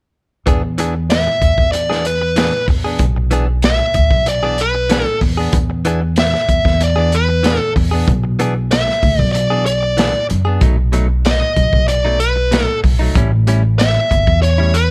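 Straight-eighth soul blues in E mixolydian at 94 BPM, laid-back and soulful, this excerpt pairs a gritty, saturated breakbeat kit with a tight kick and rolled-off top with a woody, thumpy pizzicato upright bass and compressed, direct-recorded clean electric guitar stabs bathed in plate reverb, while a smooth overdriven lead guitar sits up front with its own plate reverb from 1.1 s, all over an E7 vamp that shifts to B7 at 10.6 s and A7 at 13.2 s in a lightly reverberant room.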